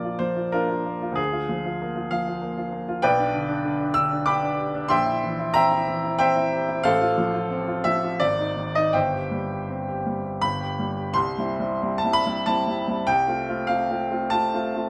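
A romantic classical character piece for solo piano, this short excerpt from a longer work carries a lyrical, hopeful mood in a flexible 3/4 with rubato, its tempo drifting between 79 and 101 BPM. A warm, open baby grand sits up front and plays alone throughout, ranging from a deep G1 to a bright E6. The harmony opens on Bb before settling into C major from 3.0 seconds, passing through colorful chords such as C7/Bb and Ab5 on its way to a C major arrival at 11.2 seconds. That arrival marks a new section, which moves to F/C before the passage breaks off at 14.9 seconds. A moderate large-studio reverb gives the piano a gentle sense of space around its notes.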